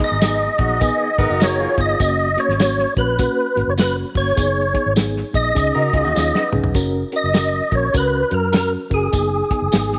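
A lightly overdriven tonewheel organ with percussive attack, chorus vibrato and a fast rotary speaker carries the melody up front from the start, over mellow, reedy electric piano with fast tremolo, a dry, dark soul drum kit with a tight kick, and a brief, smooth horn section with slapback echo that drops out at 1.7 s. This uplifting, uptempo 1960s-style soul cut swings at 101 BPM in F# major, joined by a round, foam-muted fingered bass and a jingly, band-limited tambourine. A slightly broken-up, lo-fi guitar adds short picked riffs with spring reverb in the background, and a drum fill at 6.2 s leads into a new section, all set in a moderate echo-chamber reverb.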